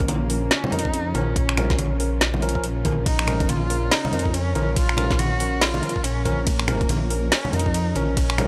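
A dry, gritty excerpt of brooding, heavy deep dubstep in Bb minor at 141 BPM with a swung half-time feel, where an expressive bowed cello with vibrato and portamento carries the melody through dub echo over a tense, very quiet string-like drone, clean tine electric piano stabs also echoing, a deep, rumbling detuned saw bass, an overdriven knocking electronic kick, an up-front garage kit of woody snare, metallic hats, ride, and finger snaps, and distant hard-hand congas joining at 0.1 seconds in the background.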